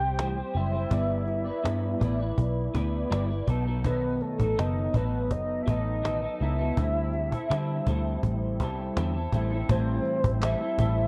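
A soft, octave-layered synth lead carries the melody from the start over a slightly broken-up electric guitar played through a small old amp and a round, foam-muted vintage bass, with a woody, close cajon entering at 0.2 s in this wistful, mellow indie and bedroom pop excerpt at 82 BPM in straight 4/4. The synth has analog chorus and plate reverb, and the guitar carries ensemble chorus and warbly pitch drift, while the whole recording sits in moderate studio reverb with the worn, warbling character of old cassette tape. Near the close, a hollow, very quiet group handclap sounds briefly at 10.4 s over chords moving from Am7 through Em7/G and B7 back to Am7.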